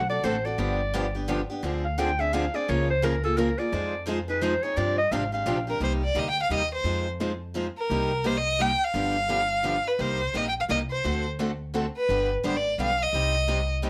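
Lightly reverberant and intimate, this bittersweet, swinging jazz manouche piece in three opens with a breathy, subtoned clarinet solo up front until 5.7 seconds, when an expressive bowed violin takes over the melody with vibrato and portamento, with a growly, woody pizzicato upright bass and two boxy picked steel-string acoustic guitars carrying the piece throughout.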